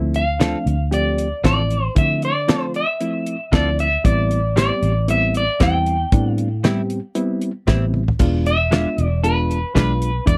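Dry and close in a 1970s studio manner, this soulful, mournful straight-eighth soul blues is cut from a longer piece and moves from Dm7 to Am7 before landing on E7b9. A dark, slightly broken-up guitar through a small old amp carries the melody with harmonic tremolo, while a clean, compressed direct guitar adds chorused stabs and a reedy electric piano heard through its built-in speakers fills in the chords. Up front, a round, foam-muted fingered bass and a damped acoustic kit with a fat snare, tight kick and dusky cymbals anchor the groove, with a drum fill at 7.9 seconds.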